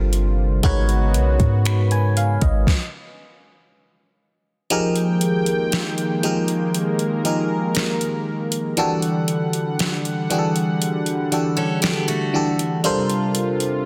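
Contemporary R&B with a late-night, sensual mood, this passage is cut from a longer piece and built on glassy, bell-like FM electric piano chords treated with chorus and phaser over a smooth, detuned sawtooth pad. A deep, boomy 808-style bass sits up front until it drops out at 2.7 seconds. A produced drum kit of finger snaps, metallic hi-hats, a deep snare with soft clipping and a soft kick pauses for a stop between 2.7 and 4.7 seconds, then returns with the kick muted from 4.7 seconds. At 11.6 seconds a bright, boxy picked acoustic guitar adds brief arpeggios through digital delay, and the mix sits in light digital ambience with a dense, heavily limited modern master.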